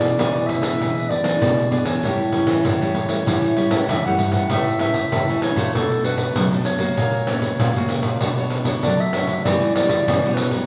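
Joyful and playful, this short samba-and-choro excerpt moves at 97 BPM in a straight 4/4, with a dark, soft-attacked clarinet carrying the melody in a roomy classical style. Two fingerpicked nylon-string guitars support it, one with warm classical accompaniment and the other supplying a full-bodied bass line, while a jingly pandeiro played with hard hands sits up front. The band plays live together in one room with a wet, large studio reverb, and the harmony shifts at 4.5 s from an E7–A7 opening into a new passage that settles onto Emadd9.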